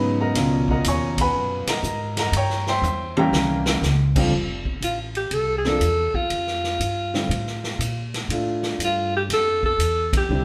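A clear alto saxophone with light vibrato and scooped notes enters at 4.8 seconds, playing a distant, roomy solo as this open, hypnotic modal jazz excerpt settles into F major, moving from Db13sus4 and C7b9 to Fmaj9. Beneath it, an intimate, up-front upright piano with audible action noise and long sustain carries the accompaniment, while a woody, thumpy pizzicato upright bass holds the low end at 121 BPM with a swung feel. A swinging big-band drum kit with a boomy kick and rolled-off top plays a fill at 2.8 seconds and a band accent lands at 10.0 seconds, with the band playing live in a wet stone room.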